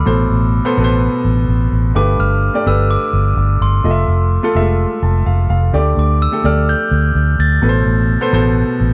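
A straight 4/4 pulse at 127 BPM drives this earnest piano-driven pop passage in A minor, cut from a longer piece. A dark, foam-muted electric bass sits furthest forward in the mix, its round, punchy fingered notes anchoring the low end. A clear, polished baby grand piano carries the accompaniment across the progression of Amadd9, Gadd9, Fmaj7 and Dsus4, breaking into a brief fill from 4.8 to 5.7 seconds. Above them, a glockenspiel struck with rubber mallets plays the melody in a mellow, bell-like voice, sitting softer in the balance and dropping out at 8.1 seconds while piano and bass carry on to the close. The sound is dry and close, in the manner of a 1970s studio recording, giving the driving groove an intimate, present feel.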